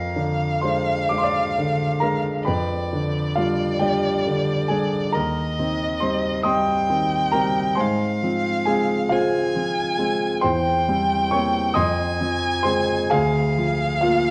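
A solemn, melancholic romantic duo pairs a single bowed violin, rich and focused with vibrato, singing a slow melody in C minor, with a concert grand piano whose natural tone and deep bass underpin the accompaniment. The pulse moves freely in 6/8 at around 45 BPM, with harmonies drifting through diminished and dominant-seventh colours and passing through C minor and F minor along the way. The whole fragment sits in a reverberant recital hall and carries the worn, warbling pitch drift of old cassette tape.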